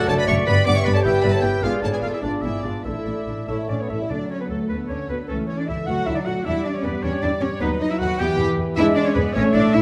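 Graceful and lively, this excerpt from a quick classical-period movement for symphony orchestra in D major moves in a rubato 6/8 at 103 BPM, with a violin section singing the melody over second lines from bright clarinet, clear oboe, airy flute and soft background violins, mellow French horn chords, a viola section, a dark double bass section and a cello section in the bass, dark trumpet stabs until 3.9 seconds, a brief distant bassoon figure near 3.5 seconds and a brief, very quiet close timpani entry at 4.1 seconds, all bathed in a recital-hall reverb.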